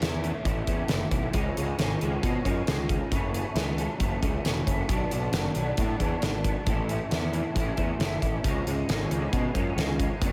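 Restless and anthemic, this 135 BPM quiet-loud alternative rock excerpt cut from a longer piece sets a twangy, slightly broken-up electric guitar playing chorused arpeggios through a small old amp against a growly, fuzz-laden picked bass and a huge arena drum kit with a fat snare and punchy kick, all up front in light reverb as the chords move from A through C# and F#m to Bm and back.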